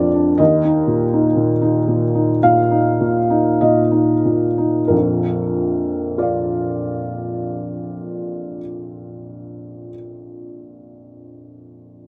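A felt-muted upright piano plays alone in this short neoclassical minimalist fragment, its tone soft, dark and boxy, sitting up front and intimate under a light reverb in an open-air setting free of any room sound. In Bb major and a rubato 4/4 somewhere between 44 and 63 BPM, the playing slows through the opening seconds over an Ebsus2 chord before settling onto Bb at 4.9 seconds, spanning Bb1 to F5. The mood is hopeful and peaceful, and the piano sounds until 12.1 seconds.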